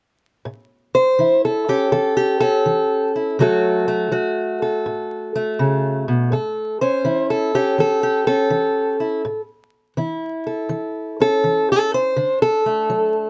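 A fingerpicked steel-string parlour guitar opens the recording at 0.5 seconds, playing alone in a rollicking, laid-back acoustic country blues cut from a longer piece. The swung eighth notes in 4/4 give it an easy, loping gait, while the chords move between A and D, settling on A at 6.3 seconds before turning back to D at 12.2 seconds. The guitar sits up front with a boxy, warm character, and finger squeaks on the strings add to the intimate feel. Close, detailed microphones capture the instrument in a light reverb, with a layer of vinyl crackle giving the sound an aged patina. The guitar plays through to 13.3 seconds, where the excerpt ends mid-piece.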